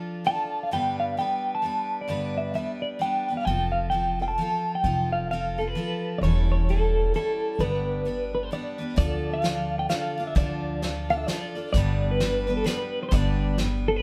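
Nostalgic and gentle, this acoustic folk piece for a small band sways in a swung 3/4 waltz, with a bright, full-bodied steel-string acoustic guitar picking the accompaniment from the first moment, its fresh strings catching the occasional finger squeak. A clean electric guitar carries the melody from 0.3 seconds, warm, fingered and compressed, with a trembling tremolo. An upright bass joins at 3.5 seconds with woody, dark pizzicato notes low in its range. At 9.0 seconds, as the opening section begins again, a loose, roomy drum kit comes in with hi-hat, a tight kick and a fat snare. The band sounds as though it is playing live together in one room, with a moderate studio reverb. The harmony moves between Dm and G, passing through F and A7/E, and the recording is cut from a longer piece.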